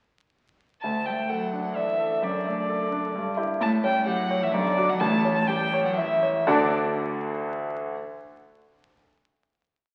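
A very old 78 rpm record, crackling with vinyl noise and bathed in a wet scoring-stage reverb, carries this short, spirited classical-period movement for piano trio in D major, moving briskly at 128 BPM in 3/4. From 0.8 seconds a rich, pure violin takes the melody up front, its bowed line floating with a soft attack and sul tasto tone, while a single cello, intimate and close with light vibrato, doubles the tune at the octave. Beneath them the grand piano, smooth and vintage in character, sits up front with broad broken chords that run through a cheerful progression from D through Em7/G, A7 and Bm before returning home. The strings fall away at 6.7 seconds, leaving the piano to ring out the final D chord until 7.9 seconds.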